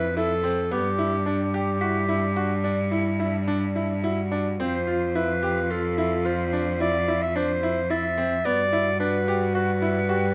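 A clear clarinet melody leads this restless, hopeful piece of contemporary chamber music in 7/4 at 109 BPM, set over a warm French horn second line in the background, brilliant grand piano arpeggios with long sustain and a biting, bowed cello bass with light vibrato, while a metallic, bell-like glockenspiel struck with hard plastic mallets rings in the background with a boxy small-room sound from 1.8 to 8.7 seconds, all moving from Fmaj7 through G and back to Fmaj7 before reaching Gmaj7 in a moderate recital hall reverb captured by close, detailed microphones in this short passage cut from a longer work.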